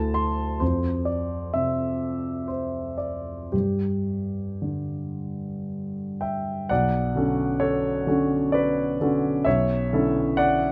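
Hazy and mysterious, this brief impressionist classical passage for solo grand piano unfolds in 3/4 at a slow 54-66 BPM with a loose, rubato feel, and is cut from a longer piece. The warm, present piano sits up front across a span from B1 to C6, moving from Dsus2 through F5 and G5 chords before settling into B minor at 6.7 s on Bm9 and then Bm11. Close, detailed microphones and a light reverb frame the instrument.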